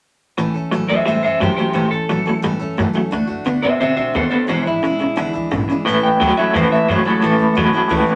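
At a straight 175 BPM in 4/4, this rowdy, retro rockabilly excerpt in A major pairs a twangy, slightly broken-up electric guitar riff with tremolo and a second lo-fi electric lead melody entering at 0.9 s, over a full-bodied picked dreadnought acoustic and a woody, thumpy pizzicato upright bass, all bathed in wet studio reverb as the chords move from A through D and E7 before returning to A at 5.9 s.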